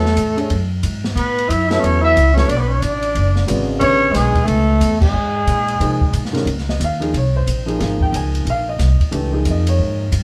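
Heard from further back in a moderate club room, this short cut from a longer modal jazz piece has an open, spiritual mood at a brisk 181 BPM in 4/4 with a swung feel. A growling, raspy trumpet carries the melody up front with vibrato and scooped notes, set in plate reverb, while a breathy tenor saxophone with light vibrato plays a second line beneath it; both horns stop at 6.3 seconds. A woody upright piano supplies accompaniment, and a pizzicato upright bass with steel strings sits up front in the mix. The open jazz drum kit sounds smooth and dark throughout, from its boomy kick and medium-tuned snare to the hi-hat, ride and crash. The band hits an accent at 5.0 seconds, and at 6.5 seconds the harmony moves from E mixolydian to Db lydian, leaving piano, bass and drums to carry the closing section.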